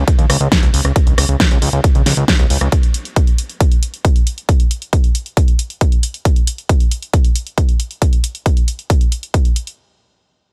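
A dry sound frames this emotional, bittersweet uplifting trance excerpt, where a fat, detuned sawtooth analog bass with a filter sweep and sidechain pumping sits up front only until 2.7 seconds, while a punchy layered electronic kick carries on to 9.4 seconds and a big-room dance kit of hi-hat, rim click and huge snare, its hats pumping, carries on to 9.8 seconds.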